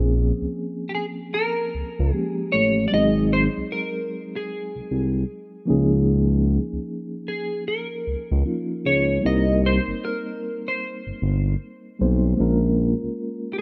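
A swung sixteenth-note feel at 76 BPM in 4/4 sets an unhurried, sultry groove for this short neo-soul and R&B excerpt in Bb dorian, cut from a longer piece. A smooth synth bass anchors the low end from the start, its sawtooth and square-wave tone sustained with a touch of vibrato and sitting up front as the loudest part. A mellow, reedy electric piano carries the accompaniment through a fast tremolo, sounding as if played through its built-in speakers, while the chords move from Bbm9 through Ab7, Db69 and Cm7 before settling on Bbm7. At 0.9 s a clean, dark, picked electric guitar enters with the melody, shimmering through an analog chorus in a fairly high register. Light digital reverb and the rough feel of a home demo mix lend the whole an introspective, intimate quality.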